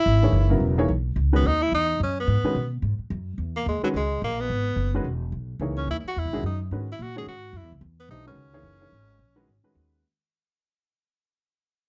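The sound is dry and close, like a 1970s studio session with little reverb, and the whole passage is fading out from 1.2 seconds onward. The music is a hypnotic, intense piece of modal jazz, cut from a longer performance, sitting on a single C#m7 chord with a swinging 4/4 feel. Up front, a tenor saxophone carries the melody as a jazz-style solo, its tone clear and present with a light vibrato and a short slapback echo. Beneath it, an acoustic upright bass plays pizzicato on steel strings, with a growly, woody body that sits forward in the balance. An upright piano supplies accompaniment with a slightly detuned character and short sustain. The saxophone drops away at 9.7 seconds, leaving bass and piano to carry on under the fade.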